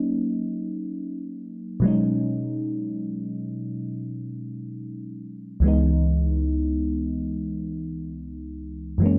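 R&B in a longing, sensual mood, this short fragment of a longer piece features a mellow FM electric piano playing alone for its full 9.2 seconds, moving from D#m7 through B69 to C#m9. The piano sounds soft and round, with a fast attack, decaying notes and a noise layer, treated with chorus and phaser and sitting up front. A lush hall reverb and dark production wrap the piano in an intimate, velvety glow.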